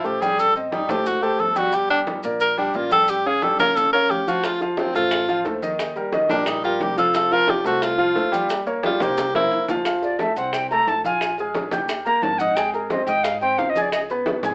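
A clear tenor saxophone with vibrato and a subtone carries the melody up front over a warm concert grand piano, woody pizzicato upright bass in the background, ringing congas and grainy maracas in this sunny, sophisticated Afro-Cuban jazz excerpt, heard through an AM radio sound in a moderate studio ambience. Round, low-tuned bongos with a compressed, saturated edge join at 4.4 seconds, and a drum fill near 9.2 seconds closes the saxophone solo. A breathy, reedy jazz flute with a straight tone and rolled-off highs takes over the solo at 10.0 seconds.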